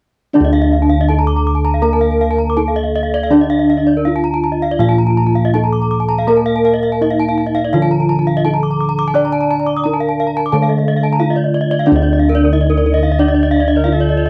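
In a straight 4/4 at 81-91 BPM, this brilliant, shimmering gamelan fragment in D pelog opens with a soft bronze metallophone melody struck with padded mallets, a lower metallophone accompaniment, two ringing metallophones played with horn mallets, one bright and one dark, spinning arpeggios above, and round, up-front bossed gongs carrying the bass, before a mellow, reedy alto recorder with vibrato and an airy chiff adds a second line at 12.9 s in the closing section, all captured in a dry, close 1970s-style studio sound with light reverb.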